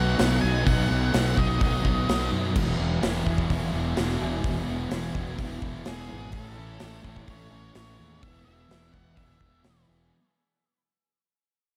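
A straight 4/4 rock pulse from a punchy, up-front big drum kit with bright cymbals drives this wistful, hazy shoegaze and dream pop excerpt, where a round, overdriven fingered bass and a thick, distorted fuzz guitar with analog chorus join a raw garage guitar in the background carrying overdrive and reverse reverb, a very quiet, twangy, slightly broken-up guitar through a small old amp picks arpeggios from 2.6 seconds, and a dark octave-fuzz lead guitar with tape echo sings a melody in two phrases, all in a dreamy mix soaked in lush hall reverb as the chords move from B7 to Eadd9, Amaj7 and E under a fade-out.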